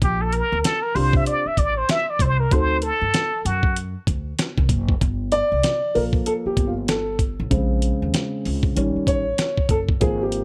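A swung 96 BPM jazz-hop groove in 4/4 rides on a gritty, compressed sampler-style kit with a thumpy kick and fat snare, joined by a woody pizzicato upright bass, setting a cool, nocturnal mood in this fragment of a longer hip hop piece. A bright, plunger-muted trumpet opens with a punchy, vintage-toned solo full of wah-wah and vibrato that ends at 3.8 seconds, while a dark, mellow baby grand piano enters at 0.9 seconds and takes the solo at 5.0 seconds with long sustain. Light reverb gives the up-front trumpet, drums and piano a small-room feel.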